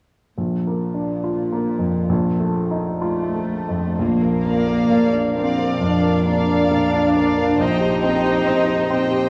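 Passionate and lyrical, this brief romantic passage for piano and orchestra unfolds in Bb major at a slow, rubato pace of roughly 58 to 72 BPM in 4/4. A polished grand piano carries the melody up front from the opening, joined at once by a chamber cello section holding the bass line with light vibrato and a soft, bowed attack. At 4.0 seconds a double bass section settles in beneath them, and at 4.4 seconds the violins and violas enter, one violin section singing a melody in the background with vibrato while another traces a second line and the violas fill in the accompaniment, all played sul tasto with an intimate, close chamber sound. The harmony moves from Bb through F7/Bb and back, touching Cm7/Bb near the close. The recording sits in a moderate concert hall reverb yet carries the worn, warbling character of old cassette tape, with a wavering pitch drift and a hint of small room ambience. 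It is cut from a longer piece.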